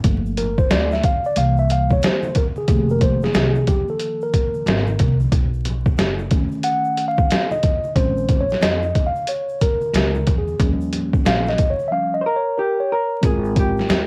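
The recording has a homespun cassette character, with vinyl crackle and a digital ambience wrapped around a relaxed, smooth jazz-hop groove cut from a longer piece. A mellow tine electric piano sits up front, clean and direct, and takes a solo over a jazzy progression that moves from Gm9 through Fm11 and Bbm11 toward Ab69. Underneath, a woody upright bass with gut strings gives dark, pizzicato support, while a sampler-style trip hop kit supplies a thumpy kick, a medium-tuned snare and hi-hat, compressed, pitched down, muffled and overdriven as if re-recorded in a small room. Far back in a large room, a bright tube shaker and congas add faint acoustic texture. The drums fall silent from 11.9 to 13.2 seconds, and at 12.2 seconds a dark, fingered hollow-body jazz guitar steps forward with a short melody, shortly before the piano solo ends at 13.2 seconds.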